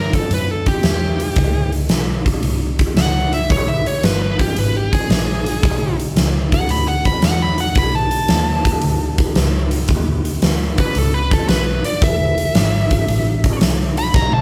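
A huge, up-front arena drum kit with a fat snare and punchy kick drives this swaggering blues rock and southern rock excerpt at 113 BPM with a swung feel, as a smooth, dark overdriven lead guitar solos over a round, foam-muted picked bass through A7#9, E7#9 and B7#9 changes, with light reverb giving the band a live-in-one-room sound and a drum fill arriving at 14.1 seconds.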